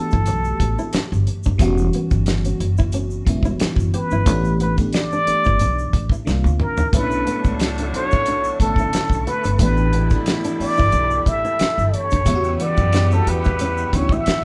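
A breathy, plunger-muted trumpet sings a wah-wah jazz melody over a dreamy FM electric piano with a soft pad layer, chorus and phaser in this smooth, sultry R&B and neo-soul piece at 90 BPM in E dorian, joined by woody pizzicato upright bass, a dry, up-front 70s drum kit with a fat snare and a fill at 6.3 seconds, a fingerpicked flamenco guitar in the background and faint egg shaker and finger snaps, while a clean tonewheel organ with slow rotary speaker and a distant, punchy horn section playing stabs enter at 6.9 seconds, the band sharing one lightly reverberant room.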